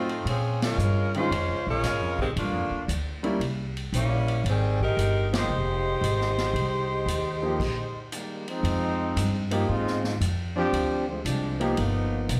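A swinging 4/4 pulse at 115 BPM drives this brassy big band jazz excerpt in F minor, where a bright, vibrato-laden saxophone section carries the melody over clear baby grand piano with slapback echo, woody pizzicato upright bass and a punchy acoustic drum kit, with band accents at 0.5 and 5.2 seconds and a stop at 7.6 seconds before a close-miked, brilliant trombone section takes a solo from 8.6 seconds in a club-reverb live sound.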